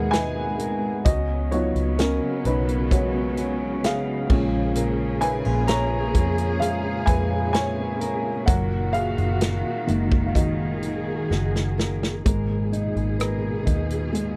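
A straight 4/4 pulse at 64 BPM carries this heartbroken, longing pop ballad, where a dark, worn, slightly detuned upright piano sits up front with a woody solo over Abmadd9, Db7sus4, Bbm7 and Gb6 until 12.3 seconds, backed by a distant bowed string section with vibrato and portamento, a full-bodied jumbo steel-string guitar fingerpicking arpeggios in the background, a round, foam-muted vintage electric bass, and a natural country drum kit with a punchy kick, rim clicks, hi-hat and crash that plays a fill from 11.3 seconds, set in a dry, close 1970s-style studio recording.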